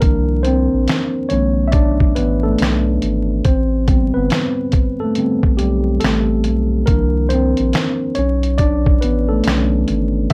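Vinyl crackle and a moderate small-room reverb frame this hazy, nostalgic lo-fi hip hop fragment, where a worn, slightly out-of-tune tine electric piano, run through cassette tape and a low-pass filter, takes a swung solo over minor eleventh chords, backed by a deep, saturated sine sub bass and a compressed, muffled, pitched-down sampler-style kit of thumpy kick, medium-tuned snare, hi-hat and finger snaps.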